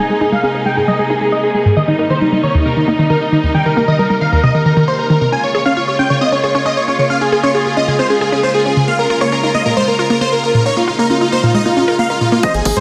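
Bathed in a lush hall reverb, this soaring, uplifting trance passage at 135 BPM sets a huge, detuned supersaw lead melody, colored by cassette-tape grit, sidechain pumping, a low-pass filter and dub echo, over smooth bowed studio strings sustaining Abadd9, Eb6, Db6 and Bbm7 chords and a punchy wave-folded unison pluck arpeggio, with lead and pluck under a filter sweep until 12.4 s, when a clear baby grand piano, a dry overdriven electronic kick and hi-hat, and, from 12.5 s, a gritty driven synth bass arrive just as this cut from a longer piece ends.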